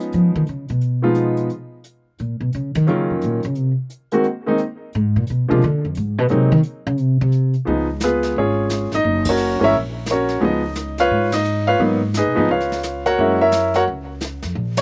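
Relaxed and warm, this swinging jazz piano trio moves at 175 BPM in Db mixolydian, with a smooth, vintage grand piano carrying the melody up front over a woody, pizzicato upright bass that solos for the first 7.7 seconds and a brushed drum kit with dark cymbals and a boomy kick, before the band hits accents at 9.2 and 11.3 seconds in a dry outdoor sound.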